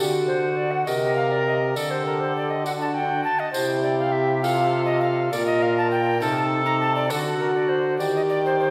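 Courtly and solemn, this short excerpt from a longer piece is a renaissance-style consort dance in a straight 6/8 at 67 beats per minute, counted in dotted quarters. An alto recorder carries the melody from A4 up to Bb5, its airy, woody tone marked by a crisp chiff on each attack and lifted highs that give the line an expressive glow. Beneath it a single viola plays the second line with a reedy, gut-string sound and light vibrato, heard from a distance, while a mellow trombone, close-miked with a soft attack, supplies the accompaniment. A bright trombone anchors the bass between Bb2 and Eb3, slightly lower in the mix than the upper parts. A jingly tambourine enters at 0.9 seconds and sits quietly in the background until 8.3 seconds, while the ensemble is framed by a lush, reverberant hall sound. The harmony moves through D, suspended and diminished colours, and ends on an Eb6 chord.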